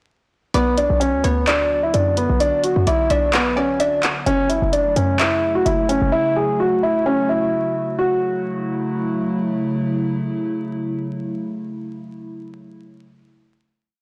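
Hip hop in a trap vein, this short, complete piece moves at 129 BPM in 4/4 with a half-time feel, its menacing, hard-hitting mood set in F# minor and tuned slightly flat to A4 = 437 Hz. A dark, mellow concert grand piano carries the looping melody up front, repeated like a sampled loop, while a twangy, string-like resonator pluck adds a sparse counter-melody in the background, treated with chorus, phaser and delay. Beneath them, a warbly, nostalgic tape-like pad holds detuned sustained chords with a slow attack and long release, colored by chorus, phaser and its own reverb, lingering until about 12.5 seconds. A punchy, tight 808-style bass plays long sub-bass notes with pitch slides, and an electronic trap kit with bright hi-hats and handclaps drives a half-time beat, both up front from 0.5 seconds until about 6 seconds. The chords move from Bm to F#m7, and after the hook the piece settles onto a final chord from 8.0 seconds, all heard in a moderate recital hall reverb and a blown-out, overdriven recording dusted with vinyl crackle.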